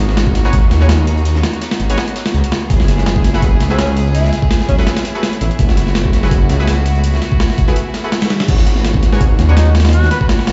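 Dark and raw, this drum and bass cut with jungle roots runs at 166 BPM in 4/4 with a light swing on the sixteenths, sitting in G# phrygian and moving from G#m11 to F#m11 at 2.7 seconds before returning to G#m11 at 8.5 seconds. A thick, menacing detuned saw bass sits up front with tube saturation and a beating, sustained tone, while a compressed breakbeat sampler-style kit with a thumpy kick, crash, hi-hat and snare drives the groove in studio ambience. A second, very quiet crunchy breakbeat kit adds a dark, saturated layer of hi-hat and snare until it drops out at 8.5 seconds, just after a brief break. Behind them, a rich chamber string section holds earthy bowed chords with light vibrato through 12-bit sampler grit, and a bold, punchy orchestra-hit-like synth stab flickers in the background with built-in reverb and dub echo. A vintage tenor saxophone with vibrato and dub echo offers short classical-style solo phrases around 3.7 seconds and again near the close. 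The whole cut sounds like a big sound system in a bare room, with large studio reverb, vinyl crackle and a dulled top end.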